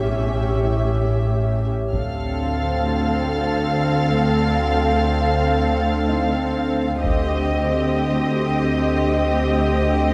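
Heard in a moderate scoring-stage reverb, this eerie, ominous cinematic suspense cue in free time and D phrygian sets a veiled, con sordino violin melody over dark muted violas, a very quiet close cello section and a nasal, evolving analog drone with chorus, while a glassy, ethereal glass harmonica holds chords, a thumb-plucked harp rings faintly, and a lush studio violin section adds a high texture until 6.7 s; from 1.9 s a second violin line, a rich background double bass section and close, dry taiko hits with heavy sticks join as the harmony moves from A7 to Dm7 and then to Cmadd9/D at 7.0 s.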